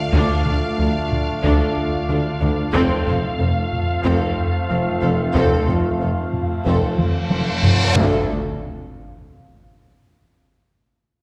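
An electronic impact opens this excerpt of a futuristic, vast hybrid orchestral and electronic film score in D minor, moving at 92 BPM in a straight 4/4 as the harmony shifts from Dm to F and back to Dm. Symphonic violins carry a lush, bowed melody with vibrato and a focused, smooth top, joined by a second violin line and a viola section in the background. A rich cello section, a clear, distant double bass section and a roomy solo tuba hold down the low end very quietly. Trombones and a very quiet, tight French horn section sustain chords beside an evolving, warbling wavetable pad with chorus, and a filter sweep runs through the opening 8.0 seconds. A round, nasal analog bass riff and a dark, ringing harp-like synth pluck playing arpeggios sit underneath, alongside a taiko ensemble struck with heavy sticks. A taiko fill and a reverse cymbal lead into a final impact that rings out to 10.6 seconds, the whole ensemble placed further back in a reverberant scoring stage.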